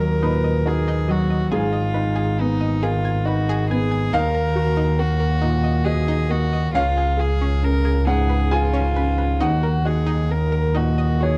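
A bowed double bass sits up front with a soft, pure sul tasto tone, anchoring this fragile, reflective neoclassical passage for piano and strings in Eb minor, moving at a rubato 68 BPM in 3/4 and cut from a longer piece. A single violin floats a smooth, soft-attacked melody through plate reverb over a woody, natural upright piano, while a bright, detuned sawtooth analog pluck ripples arpeggios in the background with chorus and slapback echo. The harmony moves from Ebm to Abm at 1.5 seconds, returns to Ebm at 4.1 seconds, touches Db7 at 6.8 seconds and settles back on Ebm at 9.4 seconds, all within a dark, warm production and light reverb.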